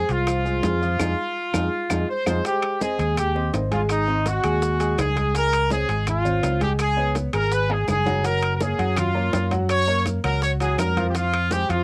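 A brilliant, punchy horn section carries the melody up front from the start, alongside a clear, worn grand piano with a tape-hued tone and a round, dark fingered electric bass in this driving, danceable salsa at 166 BPM. Tight bongos, ringing metal-shell timbales, woody claves, very quiet high-tuned congas and grainy maracas sit close behind them, the maracas carrying a touch of small-room air. A band accent lands from 1.0 to 2.4 seconds before the harmony moves from Fm7 through Abmaj7 and Dbmaj7 toward Gbmaj7, with a drum fill at 7.7 seconds, all in a small booth that feels like a home cassette recording.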